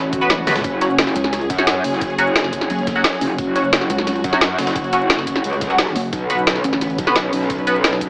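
A dark, lush bowed string section and a heavy, pulsing pluck wobble bass open this tense, mechanical stretch of dark technical drum and bass, with a very quiet electronic swell and a drum fill arriving almost at once as an overdriven, up-front kit of woody snare, bright hats, cabasa and toms joins a knocking electronic kick. A metallic, aggressive FM wobble bass with chorus and overdrive enters at 0.5 seconds alongside a gritty, pitched-up breakbeat sampler kit buried deep in the mix, while a nasal, band-passed sawtooth chord stab with phaser, tape grit and delay flickers in the background. The harmony moves from Bmadd9 to F#sus2 and back, and the whole excerpt carries a light reverb and a thin AM radio colour.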